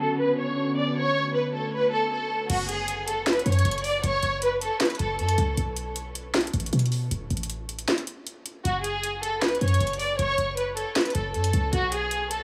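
A reedy, gut-string violin section with light vibrato carries the dark melody of this hard-hitting half-time trap piece at 156 BPM in F# minor, opening over an airy, breathy, detuned pad with chorus during a filter sweep. At 2.5 seconds a punchy, sine-based 808-style bass and an overdriven electronic trap kit with a sharp snare, bright hi-hats, handclaps and crash cymbal arrive, sitting up front alongside the distant-sounding strings in a small, lightly reverberant room. The violins drop out for a break from 5.6 to 8.7 seconds before returning over F#m and B5 chords.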